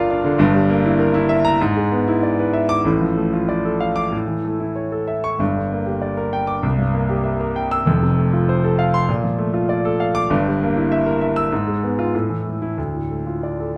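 Close, detailed microphones place a concert grand piano up front in a recital hall whose moderate reverb gives the notes a natural glow. This passionate, stormy fragment of a classical virtuoso piano study lasts 13.8 seconds and is cut from a longer piece. The solo piano has a warm tone and a deep bass, ranging from F1 up to E6. Set in D minor at about 97 BPM in 4/4, the playing leans on rubato, so the beats fall unevenly and the pulse feels restless. The harmony travels through darkened chords such as Edim/G, E7/G#, Gm, C7 and Bbmaj7 before settling on D minor at 12.8 seconds. The instrument is tuned slightly low, with A4 at 439 Hz.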